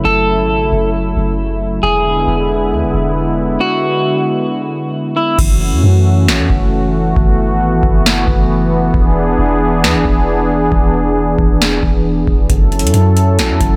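A half-time 4/4 groove at 135 BPM drives this spacious, melancholic cloud-rap excerpt in F# minor, with a booming analog drum machine arriving at 5.4 seconds, its deep kick and crisp snare re-recorded in a large room and held up front, while the metallic hi-hats stay muted until 12.5 seconds. Throughout, a smooth, detuned sawtooth pad sustains chorused chords with sidechain pumping, and a soft, round 808-style bass adds dark, decaying sine tones beneath the F#m7 and E7 changes. Over the opening stretch, an electric guitar at the edge of break-up plays a fingered melody with tape echo until the drums enter, and light reverb frames the whole piece.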